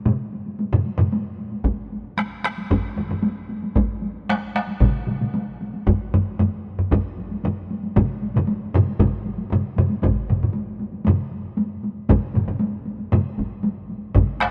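Heavy-stick taiko drums anchor this short cut from a longer Japanese traditional taiko ensemble piece, their compressed, saturated strokes pressing hard at the very front of the sound. Around them, three more taiko parts played with hard and heavy sticks sit up front too: one close and dry, one carrying a small-room tone, and a fourth, also close and dry, joining at 1.6 seconds. The music moves in straight 4/4 at about 115 BPM and speeds up across its roughly 14.5 seconds, giving it a driving, powerful momentum. A vast ambient reverb with a long 4.6-second tail surrounds the ensemble, lending a cavernous bloom behind the punchy hits. A new section arrives at 10.0 seconds and carries the surge through to the close.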